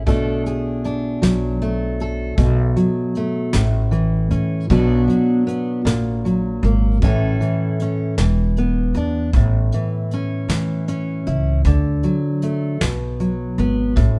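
A fingerpicked steel-string dreadnought guitar sits up front with a dark, full-bodied tone, carrying this melancholic, reflective acoustic folk piece in a slow, straight 6/8. Beneath it, a pizzicato upright bass on gut strings gives a woody, thumpy low end, while a soft brush kit, also up front, adds a fat snare and punchy kick from a small room. The trio plays live together with light reverb, moving from Bm7 through chords such as F#add9/A#, E5 and D before settling on B5 at 12.8 seconds.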